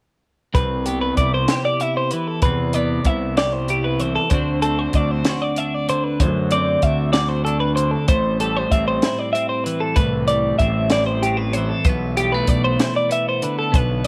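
A light reverb and small room ambience frame this bright, wistful math rock and midwest emo excerpt in 6/8 at 64 BPM, where two clean, twangy, compressed twelve-string electric guitars sit up front, one comping in the low-to-middle register while the other spins arpeggios up to E5. A dry, punchy compact cocktail drum kit with a high-tuned snare drives hi-hat, kick and snare, and a dark, round fuzz-overdriven picked bass enters at 0.6 seconds beneath a progression of Cmaj7, D7, Am7 and G69/B.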